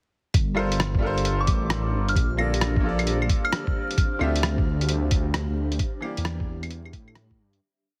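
A menacing, detuned saw bass sits up front in this rainy, ghostly future garage piece, its long gliding notes saturated and pumping against a muffled, thumpy two-step kick and a skittering, shuffled sampler kit of closed hats, claves and rim clicks. A brilliant, woody upright piano drops sparse, echoing chord stabs with gritty 12-bit character, while a soft FM bell adds short chorused phrases from 1.4 to 4.0 seconds and a dark granular pad blurs slowly shifting chords in the background. The recording has a heavily compressed radio sound with vinyl crackle and light reverb, and it fades out from 5.2 seconds.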